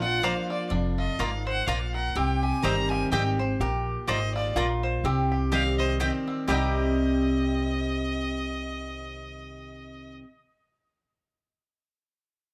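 Bluegrass in a haunting, lonesome C minor waltz at 125 BPM, this swung fragment of a longer piece moves between Bb and Cm chords, tuned slightly sharp of standard pitch. A clear, focused fiddle with light vibrato and a touch of analog delay carries the melody alongside a twangy, percussive fingerpicked banjo, while a nasal, metallic lap resonator guitar adds a slide second line. A bright dreadnought acoustic guitar provides picked accompaniment, a woody, thumpy upright bass sits up front, and a double-strung mandolin adds stabs from 0.2 seconds, all within a light reverb.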